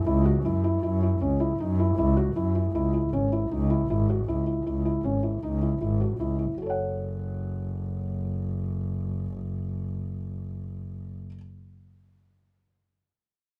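A felt-muted upright piano and a bowed double bass begin together: the piano plays intimate arpeggios with a thick-felt softness up front, while the rich bass carries the low line, played sul tasto with light vibrato and an airy bow. This urgent, restless piece of contemporary chamber music moves at 156 BPM in 5/4 in F# minor, shifting from an opening F#5 to C#m at 2.7 seconds and settling on F#m as a new section arrives at 6.6 seconds, in a moderate studio ambience. Cut from a longer piece, it ends with the bass stopping at 11.2 seconds, just before the piano.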